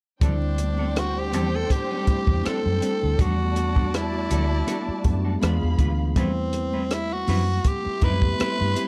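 Silky and cinematic, this short cut from a longer piece is lush 1970s-style soul at 81 BPM with a gentle sixteenth-note swing, its raspy, growling tenor saxophone carrying the melody up front over a dark, bowed string section with lush vibrato. Behind them sit a clean tine electric piano through analog chorus and a scooped semi-hollow electric guitar riff with tremolo, while a foam-muted, round electric bass and a compact cocktail drum kit with a punchy kick and rolled-off top anchor the groove, plus very quiet, distant high-tuned congas. The harmony moves from D7sus4 through Em11 and E7b9 to Am9 at 6.2 seconds, all wrapped in a dark, warm studio production.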